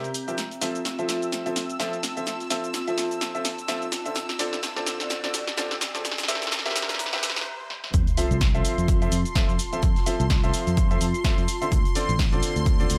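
Piano house at 127 BPM in F major with a 16th-note swing, feel-good and euphoric, this excerpt opens with a build-up where a clear, vintage grand piano riff under a filter sweep and tape echo sits beneath a silky, detuned analog string pad with phaser, a warbling, lo-fi tape-like pad in the background, a punchy analog drum machine up front, a distant, brushed jazz kit and, from 3.6 s, a very quiet riser and sub drop. After a stop from 7.5 s, the drop lands at 7.9 s with an impact, bringing in a punchy electronic kick and a fingered electric bass, while the piano, pads and bass pump against the kick through Fmaj7 and Dm7 changes.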